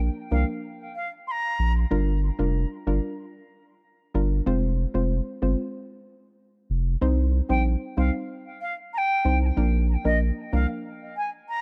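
Bouncy and sultry, this dancehall excerpt in C minor moves at 94 BPM, with a saturated, deep sub bass and a soft, round chorus-touched pluck carrying the chords from Bb through Gm7, Fm and Cm until 10.7 seconds, while a bright, airy wooden flute with vibrato and tape echo sings its melody at 0.3 seconds and again from 7.5 seconds to the close, all set in a small room within a dark production.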